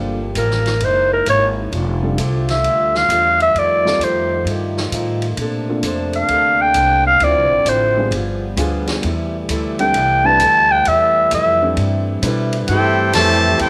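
A raspy, growling clarinet leads from 0.4 s in this joyful big band swing excerpt at 131 BPM in C major, its scooped notes and light vibrato sitting up front over a soft-attack trombone section holding sustained chords. Beneath it, a woody pizzicato upright bass, an intimate grand piano with audible action noise, a boxy picked archtop guitar in the background and a vintage drum kit with dark cymbals on hi-hat, ride and snare keep the swing going in a small room with light reverb. At 12.7 s a clear, tight trumpet section takes up the melody over a second trombone line, giving the music a brassy turn.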